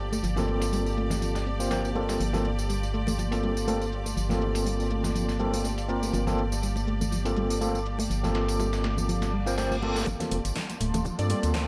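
An organ-like FM bass sits up front in this hypnotic, moody deep house excerpt, its dark, percussive notes decaying quickly and pumping against the sidechain. A barky, overdriven tine electric piano plays gritty stabs with medium tremolo, 12-bit sampler grit and dub echo, while a hollow, flute-like pad holds a Gm11 chord in the background, with a bright, biting string section lending distant, lush texture. A soft, round pluck traces arpeggios through chorus and tape echo, and both the pad and the pluck carry filter sweeps until 10.1 seconds. The swung groove blends a punchy analog drum machine, close and dry high-tuned congas, and a dusty, compressed sampler-style kit of hi-hat, shaker and snare. A reverse cymbal and riser enter at 9.3 seconds, and an overdriven electronic kick arrives at 10.1 seconds to open a build-up, where an airy, dreamy lead with vibrato touches a single brief note near the end, all within light digital reverb.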